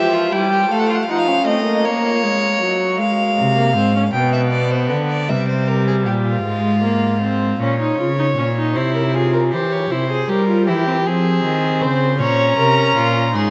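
Two violins and a viola open together in a driving, serious baroque-style fugue in straight 6/8, the first violin carrying a rich, reedy gut-string melody with light vibrato over a darker, nasal second line and the viola's warm, up-front accompaniment. A close, full-bodied cello enters on the bass at 3.4 seconds, and from 7.6 seconds the second violin takes over while the first falls silent, returning at 12.2 seconds. The period-style quartet, one player to a part, sounds from a vast, echoing cathedral with a long, muted reverb tail, and this fragment is cut from a longer piece.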